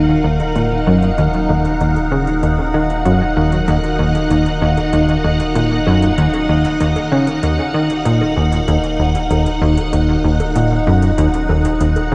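A steady, straight 4/4 pulse at 96 BPM underpins this hypnotic, cosmic slice of ambient, sequencer-driven space music in Eb minor, resting on a single Ebm chord and cut from a longer piece. Up front, a punchy, funky analog bass riff built from sawtooth and pulse waves snaps in with a filtered pluck and quick decay, touched by subtle chorus and tape echo. Beside it, a full string machine ensemble holds lush, vintage sustained chords with a sub-octave weight and slow attack, colored by phaser and ensemble chorus. Beneath them, a round sine sub bass sustains a deep Eb1 throughout. From 0.4 s, electronic hi-hat and bongos sit in the background, their metallic hats overdriven and smeared with tape echo as the drum part fades in, sounding as if re-recorded in a large room. A wet plate reverb and an echo-heavy cassette character give the whole mix a drifting, hazy depth.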